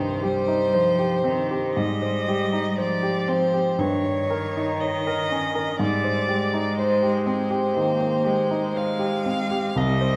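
A rich, expressive violin carries the melody with vibrato and portamento over a clear, focused cello second line and polished grand piano accompaniment in this tender, serene fragment of a slow romantic piano trio movement, played with rubato through Cm, Abmaj7 and Eb7/G harmonies and set in the lingering reverb of a recital hall.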